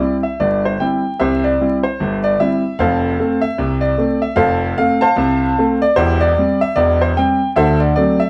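Jaunty and lively, this short ragtime piano passage is cut from a longer piece and rides a swung 2/4 lilt. A bright grand piano plays solo throughout its 8.3 seconds, reaching from the deep low register up into the upper treble, with a brilliant, smooth, vintage tone and long sustain that sits up front. The harmony moves from C to F at 2.8 seconds, then to C/E at 6.0 seconds, arriving on D7 at 7.6 seconds just as the passage breaks off. The piano is heard from further back in a club-like room with a wet, short reverb. Vinyl crackle and a muffled top end, with nothing above 10.6 kHz, lend the recording the feel of an old record.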